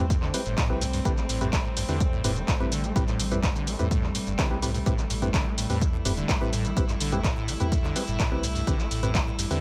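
A dry, driving and raw acid house excerpt built over a single Am7 chord, led by a punchy electronic kick with a large-room character and an analog drum machine supplying handclaps, hi-hat, shaker and toms. Beneath them, a round sine sub bass with tube saturation and sidechain pumping anchors the low end, while a squelchy, resonant sawtooth acid bass riff with a filter sweep sits in the background through tube saturation, subtle chorus, cassette tape grit and tape echo. Above it all, a rich, reedy chamber string section in a period-style gut-string tone holds bowed, sidechain-pumped chords, and a hollow, dark organ-like stab with chorus and tape echo punctuates the groove.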